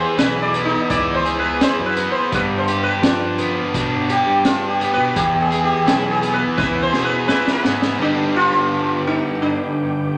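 A straight 4/4 groove at 85 BPM drives this trippy, mysterious psychedelic rock excerpt: a buzzing, shimmering sitar solos over a bright, double-tracked overdriven guitar riff that sits up front, a fuzzy electric bass, a gritty, saturated breakbeat kit with a high-tuned snare and punchy kick, and a soft, flute-like tonewheel organ with key click and slow rotary speaker murmuring in the background, all alternating between E and G chords inside a wet, large studio reverb, until a drum fill at 6.6 seconds leads the bass and drums out at 8.0 seconds, leaving sitar, guitar and organ to carry on.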